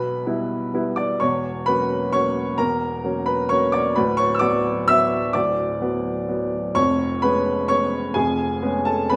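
In a rubato 3/4 waltz at around 128 BPM, a solo baby grand piano sets a bittersweet, elegant mood in B minor, its warm, open tone sitting up front with long sustain across a range from D1 to E6. The harmony moves from Em through F#7/E to Bm/D at 4.0 seconds, then to C#7/E# at 6.8 seconds, all within a single 9.2-second classical fragment cut from a longer piece. A moderate recital hall reverb surrounds the instrument with a natural sense of space.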